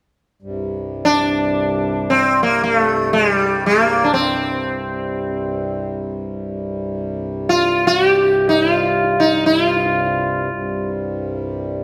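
Heard in a moderate stage reverb, this solemn, meditative Indian classical piece in free time, cut from a longer performance in raga Bhimpalasi on C, opens at 0.4 s with a reedy, breathing, close-miked hand-pumped harmonium drone, dry and full, sitting low beneath a buzzing, shimmering plectrum-plucked sitar melody that rings up front with its sympathetic strings from 1.1 s to 10.9 s.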